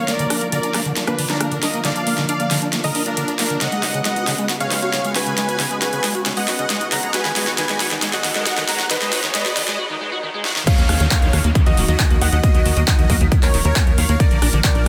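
Uplifting trance at 136 BPM in Eb minor, soaring and euphoric, where a huge detuned supersaw lead with tape echo and a lush, warbling pad ride sidechain pumping over squelchy acid-bass arpeggios and a big-room kit with a huge snare and metallic hats through a filter-swept build-up, drum fills and a brief break, until the drop at 10.7 seconds brings in a punchy kick, a tight plucked sequencer bass and a clear grand piano second line, with very quiet risers and downlifters underneath.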